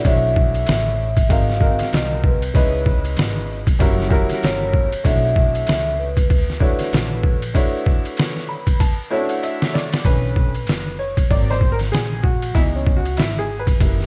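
Up front sits a gritty, compressed sampler-style drum kit, pitched down, with a thumpy kick, a medium-tuned snare, hi-hat and ride cymbal driving a cool, nocturnal jazz-hop groove at 96 BPM in 4/4 with a lazy 16th-note swing. Beneath it, a woody, dark pizzicato upright bass on gut strings adds tube saturation, while a clear, slightly detuned upright piano with long sustain comps through a B minor progression of Bm11, G#7, C#m9 and F#7b9. A vibraphone played with soft mallets carries the mellow, ringing melody over a slow motor vibrato until it drops out at 9.4 seconds. The piano and drums both play fills leading into a new section at 10.1 seconds, where the piano takes a solo over the returning chords. The whole track, cut from a longer piece and tuned to A4 = 436 Hz, sits in a small room and carries the worn, warbling pitch drift of old cassette tape.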